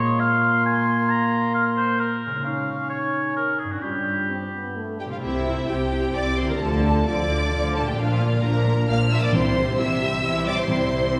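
Triumphant and heroic, this cinematic passage in 3/4 at 132 BPM is cut from a longer piece and bathed in the wet reverb of a concert hall. It opens with woodwinds carrying second lines over mellow French horn chords and ringing, fingerpicked concert harp arpeggios: a warm, vintage oboe sits up front, an airy, distant flute floats high, and a dark clarinet lies in the background, all three falling away by about 5 seconds. At 5.0 seconds the violins enter, with a lush violin section singing the melody and a second violin section adding an expressive second line with portamento. At 5.2 seconds the harmony settles into C mixolydian as the lower strings join: violas fill in the accompaniment and cellos anchor the bass in the background, while the double basses add a bowed, vibrato-rich foundation. Soft-mallet timpani with a round, close and dry tone join at 9.3 seconds as the chords return to C, and the full ensemble plays on to the end.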